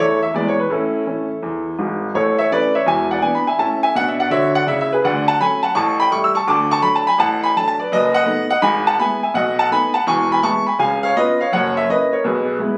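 Playful and swinging, this short stride jazz excerpt features a solo upright piano that is woody and vintage in tone, sitting up front with long sustain and reaching from the deep bass up into the high treble. A brief opening passage gives way at 2.2 s to a longer section that runs to the end at 12.8 s, moving through a series of chord changes that includes several seventh chords, with a lilting swung feel. Captured on a phone in a club-like room, it carries light reverb and compression.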